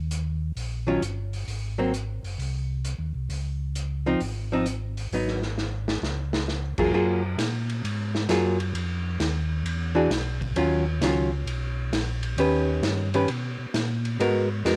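A dark, clean hollow-body archtop guitar sits up front from 0.9 s, its picked accompaniment coloured by cassette tape and plate reverb, in this greasy, swinging soul jazz organ trio cut from a longer piece. Beneath it, a mellow, round tonewheel organ carries the bass line through slow rotary speaker and chorus vibrato. A vintage acoustic kit in a small pumping room adds a punchy kick, shadowy cymbals and a rolled-off top, with a fill from 5.6 to 6.5 s leading into the second section, all with the snug feel of a home cassette recording in a modest booth.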